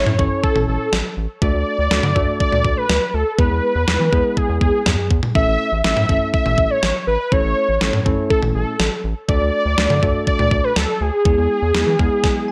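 A thick, detuned sawtooth lead sits up front, carrying the melody with vibrato over this upbeat, nostalgic synth-pop excerpt. Beneath it, a bell-like tine electric piano supplies bright, clean accompaniment, and a round analog bass adds a deep, dark low end, while a sampler-style digital drum machine punches out a thumpy kick, fat snare and toms treated with gated reverb. The harmony moves between A, D and E under a light reverb, and the electric piano slips in a brief fill at 12.2 seconds.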